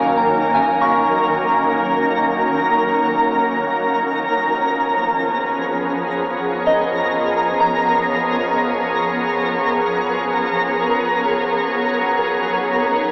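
A bright, ethereal pad of detuned sine voices sits up front in this serene, spacious ambient fragment, sustaining Ebm7, Db7/F and Abm7 chords over a dark, ominous drone that fades in from the background, while a soft FM bell plays mellow arpeggios until 11.3 s and a twinkling granular texture sparkles above, the mix bathed in wet shimmer reverb and the warbling pitch drift of worn cassette tape with an AM radio tone.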